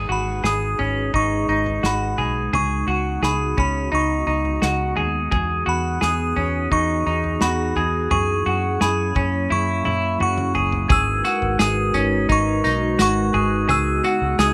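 Dream pop at 86 BPM in G# minor, hazy and ethereal, where a warbly tape-like pad holds sustained chords from G#m7 through Emaj7 and F#7 beneath bright, compressed semi-hollow guitar arpeggios with digital delay, a round, foam-muted vintage bass, a glassy FM synth bell melody, a loose small-room indie kit with tambourine and a drum fill at 9.5 seconds, and a very quiet rubber-mallet glockenspiel ringing in at 5.7 seconds, all in a rough home-demo mix cut from a longer piece.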